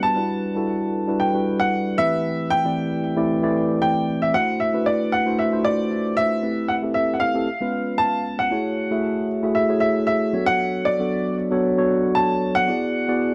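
A lightly swung 4/4 pop groove at 115 BPM sets a bittersweet, urban mood in this short excerpt cut from a longer piece. A mellow tine electric piano, clean and up front with a lush chorus, carries the extended-chord accompaniment from Em9 through Am9/E and D9, while a clear, natural grand piano sings the melody high in its register. At 8.5 s the music shifts from A dorian to B dorian, moving through F#m9 and Bm9/F# to land on E9, all within a dry, close 1970s-style studio sound.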